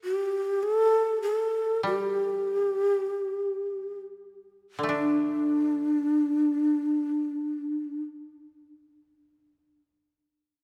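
A breathy, hollow shakuhachi opens this calm, austere fragment of traditional Japanese music, carrying the melody up front between D4 and A4 with vibrato, tongued notes and a chiff at the attacks. At 1.8 s a koto enters below it in accompaniment, its dry, woody fingerpicked tones sitting lower in the mix between D3 and D4. The pulse is free and rubato, loosely in 2/4 at roughly 33-52 BPM, and the pace slows down across the first 4.9 s before the music moves into a new section. A wet church reverb with a long 2.7 s tail surrounds the pair, giving the spare arrangement a sense of large, still space. Tuned to A4 = 442 Hz, the shakuhachi falls silent at 8.0 s as this short passage, cut from a longer piece, draws to its end.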